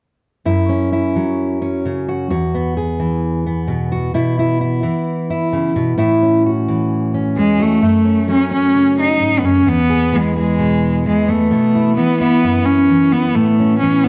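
This folk fragment feels nostalgic and anthemic, moving in a steady, straight four. A fingerpicked steel-string acoustic guitar opens at 0.5 seconds, its dreadnought body sounding dark and full, with a touch of finger squeak as it outlines chords such as F#5, Eadd9, Bsus4 and A. At 7.4 seconds a single bowed cello enters up front to carry the melody, smooth and even with a gentle vibrato and a short slapback echo trailing its rich tone. Beneath it the guitar continues through F#m, E and Bsus4, settling on Aadd9 before the recording stops at 14.1 seconds. A moderate large-studio reverb surrounds both instruments, giving the warm, dark production a mellow glow.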